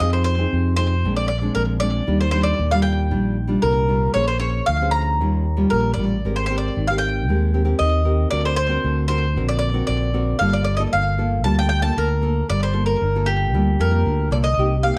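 Samba and choro in G minor at 115 BPM in a straight 4/4, this lively, yearning passage is cut from a longer piece and runs about 15 seconds. A woody, double-strung mandolin carries the picked melody up front between G4 and Bb5, its tone touched by slapback echo and plate reverb. Beneath it, a classical nylon-string guitar fingerpicks the accompaniment, while a fingered electric bass with an envelope filter sits prominently in the mix, its bright, amped sound standing out against the acoustic strings. The harmony moves through rich extended chords, from Fm7 and Bb9 through Ebmaj9, Abmaj9 and a tense Daug7 before settling on Gm9 at 10.4 seconds. The production is dark and warm with a light reverb around the trio.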